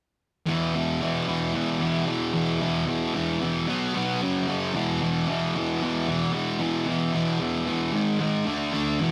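Swaggering and raw, this short rock cut from a longer piece features a lone thick fuzz guitar, bright, picked and double-tracked up front, playing power chords from E5 through B5, F#5 and G#5 to D5 in E mixolydian at 113 BPM, with a moderate studio reverb and the rough feel of a rehearsal-room recording.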